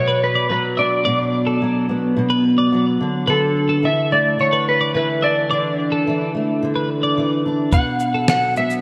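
Bright, 1980s-style digital production sits inside a lush hall reverb, giving this short acoustic pop excerpt an easy-going, sunny mood at 108 BPM in D major. Up front, a lap steel guitar carries the melody with a warm, clean slide tone, coloured by chorus and digital delay. Beneath it, a double-tracked fingerpicked steel-string acoustic guitar supplies a warm, full accompaniment, while a quieter twelve-string electric guitar adds clean, compressed picked arpeggios with its own digital delay. The harmony moves from Bm to Dsus2 at 3.0 seconds and returns to Bm at 7.7 seconds. At that moment a gritty, sampler-style drum kit arrives with a thumpy kick, fat snare and shaker under gated reverb.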